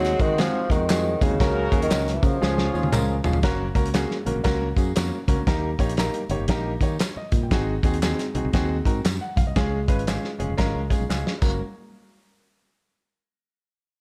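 An uplifting, danceable stretch of uptempo 1960s-style soul at 118 BPM in F# major with a swung feel, cut from a longer piece, opens with a mellow, distant tenor saxophone melody carrying vibrato and tape echo over a tight horn section in the background, both dropping out by about 3.2 seconds. An intimate grand piano with audible action noise and a direct, fingered electric bass carry the accompaniment throughout, while an up-front soul drum kit with dark cymbals and a tight kick plays fills at 2.4 and 11.1 seconds. Ringing, very quiet congas and a background blend of tambourine, maracas and group handclaps add percussion in a dark production with light studio reverb.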